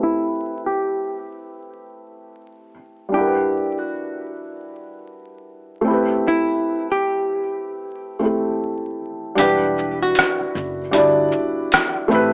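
Hazy and melancholic, this lo-fi hip hop excerpt moves with a swung sixteenth-note feel in 4/4. A felt-muted upright piano carries the accompaniment throughout, soft and intimate with audible action noise and short sustain, its tone dulled by cassette tape and a low-pass filter. Up front, a dark, clean hollow-body electric jazz guitar plays the picked melody through its own low-pass filter until 11.9 seconds, while a filter sweep shapes the opening passage over chords moving between Am7 and Em9. At 9.4 seconds a woody pizzicato upright bass enters, sitting lower in the mix, alongside a gritty, compressed, pitched-down sampler-style trip hop kit of hi-hat, rim click and shaker, with the kick muted. The room has moderate studio ambience, and vinyl crackle and a small-speaker character colour the sound.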